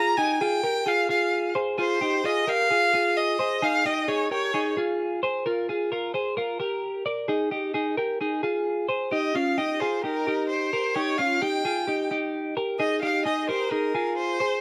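A clear, smooth violin melody with vibrato opens alongside bright, twangy, compressed twelve-string electric guitar arpeggios in this restless, bittersweet indie pop fragment at 131 BPM, moving from Fm7 through Bbadd9 and Absus2 to Eb7 and Ab5, with the violin pausing at 4.7 seconds and returning at 9.1 seconds over the steady guitar, all captured dry in an open-air setting.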